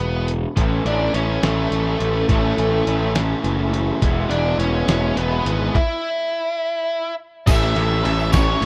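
Indie rock excerpt in 6/8 at 70 BPM, upbeat yet wistful, where a dark, up-front octave-fuzz lead guitar carries the melody over a growly fuzz bass and a muffled, pitched-down lo-fi sampler drum kit with thumpy kick and handclaps, while two overdriven garage guitars (one bright, one lo-fi with lush chorus) join the riff at 0.6 seconds beneath a very quiet tonewheel organ with key click and slow rotary shimmer, the band halting in a stop from 5.7 to 7.5 seconds before a jingly tambourine arrives for the closing moments of this lightly reverberant, rough home-demo mix.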